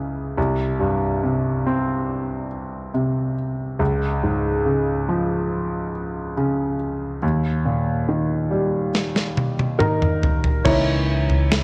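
A clear concert grand piano opens this heartfelt pop ballad at a slow 70 BPM in 4/4, its deep bass and short sustain sitting up front in the mix. The piano carries the accompaniment across the whole section, moving through C5, Db and Eb chords before landing on Dbm6. At 8.9 seconds a dusty, sampler-style soul drum kit enters with a fill, its gritty, compressed sound built on a thumpy kick and a medium-tuned snare. At 10.7 seconds a mellow fretless electric bass arrives on a low Db, dark and round in tone. Light reverb and a digital ambience surround the parts, and lossy compression artefacts are audible in this emotional fragment cut from a longer piece.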